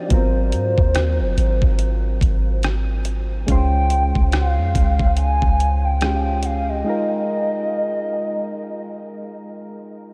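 A deep, round 808-style bass sits up front in this moody, longing contemporary R&B excerpt at 71 BPM with a swung 16th-note feel, joined by an overdriven, detuned 8-bit drum machine with a thumpy kick, hi-hat and rim click. A hollow, woody clarinet-like synth lead with chorus, vibrato and analog delay carries the melody over soft, warbling electric-piano-like keys, moving through Ab13, Dbmaj7 and Bb7sus4. The drums drop out at 6.7 seconds and the bass at 6.8, leaving the lead and keys to float in a break from 6.9 seconds; the lead fades at 9.4 seconds while the keys linger until 10.1, all bathed in a huge, dreamy ambient reverb.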